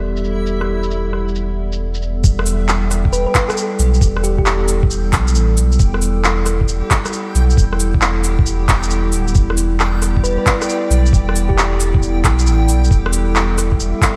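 Future garage excerpt in E minor at 135 BPM with a swung 16th feel, ghostly and melancholic: a warbling, lo-fi tape-like pad pumps against a deep, round sine sub bass and a reversed, granular swelling texture over an Em7 chord, while filtered electronic shaker, rim click, cabasa and handclaps run throughout, a muffled, thumpy kick arrives at 2.2 s, and a tine-like FM pluck with chorus and delay surfaces softly at 3.1 s and 10.2 s, all in a light digital ambience.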